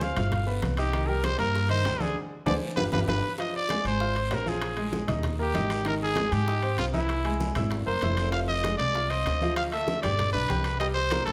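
Passionate and danceable, this salsa excerpt in C minor drives along at 195 BPM in a straight 4/4. A growling trumpet leads up front with a bright, gritty, raspy solo voice full of vibrato, while a clear concert grand piano with deep bass and short sustain fills in the harmony beneath it. The upright bass sits forward too, its woody pizzicato anchoring the low end, and congas, bongos, guiro and timbales fill out the percussion, with the timbales entering at 0.2 seconds and the very quiet, high-tuned bongos struck with hard hands. The band hits an accent from 2.2 seconds, capped by a drum fill before the next section opens at 3.4 seconds on Fm. From there the harmony moves through Eb, Ab, Caug7 and Fm7 before settling on G and a closing C5, all held in a moderate large-studio reverb.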